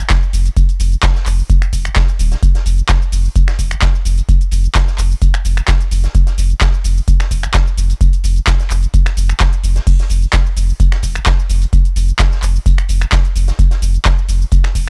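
A round, sine-like sub bass sits up front in this trippy, gritty acid house excerpt, its sustained notes pumping against a deep analog kick that is also placed up front in the mix. An electro drum machine adds metallic hats, cabasa, finger snaps, handclaps and crash cymbal with a tape-saturated, small-room character, while a natural-sounding acoustic kit with a medium-tuned snare and filtered, pumping hats stays in the background. The excerpt has a dry, gritty hardware sound with a lightly swung sixteenth-note feel.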